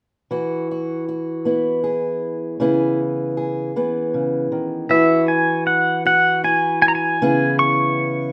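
In a 3/4 at 78 BPM, this short, hopeful and peaceful acoustic folk passage, cut from a longer piece, opens at 0.3 s with an up-front fingerpicked archtop guitar, complete with audible finger squeak, outlining Eadd9 and C#m7 chords, before a clean, twangy, compressed pedal steel guitar played with fingerpicks joins it at 4.9 s, carrying a high slide melody with volume swells over Esus2 and C#m7, all set in a moderate large-studio reverb.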